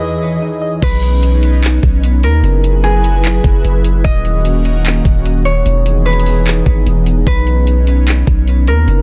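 A half-time trap beat at 149 BPM in 4/4 anchors this dreamy, floating cloud-rap hip hop cut in B major, where a breathy, detuned pad with chorus and sidechain pumping holds sustained chords and a fingerpicked concert harp rings out a delayed melody, while soft, round electric-piano-like synth keys arpeggiate only until 0.8 s, when a deep, dark sine 808 bass and an up-front trap kit (knocking kick, metallic hats, handclaps and crash, carrying vintage 12-bit sampler grit) arrive in a dry, dense, heavily limited mix over chords moving from Emaj7 through Badd9, F#9sus4 and D#m7.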